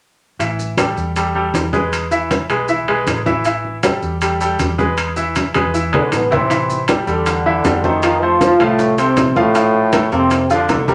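The excerpt opens with a brilliant, up-front grand piano comping over a dark, foam-muted fingered electric bass, while ringing low-tuned congas, metal-shell timbales and grainy, mellow maracas set up a fiery, danceable salsa groove at 157 BPM in A minor. The harmony moves between A5 and E chords before shifting to Am7, F7 and Bbmaj9 in the second section. At 5.9 seconds a tight, pop-style trombone section takes the melody, smooth on top with light vibrato and sitting at the front of the mix. A drum fill bridges into the second section, where round, very quiet bongos join at 6.5 seconds. The piano's short sustain and the congas' hard-handed, saturated attack give the playing its punch, all set in a studio space with a wet, short reverb.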